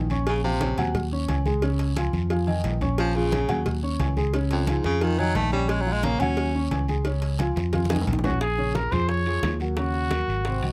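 A fiery, sophisticated slice of Afro-Cuban jazz in a straight 4/4 opens with a natural-toned baby grand piano comping over a growly, amped electric bass that sits up front. Close, hard-handed cowbell and tight, high-tuned bongos join almost at once, alongside very quiet, thin-skinned low congas, a raspy, dry guiro, and ringing agogo bells and timbales set back in a small room. A breathy, clear baritone saxophone takes the solo spot with light vibrato in jazz style, appearing briefly and then returning from 3.0 to 6.7 seconds over a repeating minor-key chord cycle. At 8.2 seconds a warm, roomy trumpet enters with the melody, sounding distant yet placed up front with its own gentle vibrato. The close, detailed recording carries little reverb and keeps the groove intimate until the clip cuts off mid-piece.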